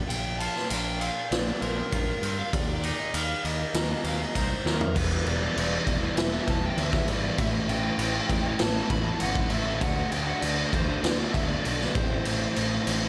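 A raw garage drum kit sits up front, boomy in the kick and gritty in a bright stone room, with a rolled-off top, driving this restless, anthemic stretch of quiet-loud alternative rock alongside a fuzzy, overdriven picked bass and a lead guitar through a small cranked amp carrying the melody. At first, a twangy, scooped clean guitar plays lush chorus-soaked arpeggios in the background over Bbadd9 and Eb. After a drum fill at 4.7 seconds, two fuzz guitars enter at 4.9 seconds with a riff over Em, A, D and Am, one thick with distortion and slapback echo and the other very quiet and compressed, all within light studio reverb.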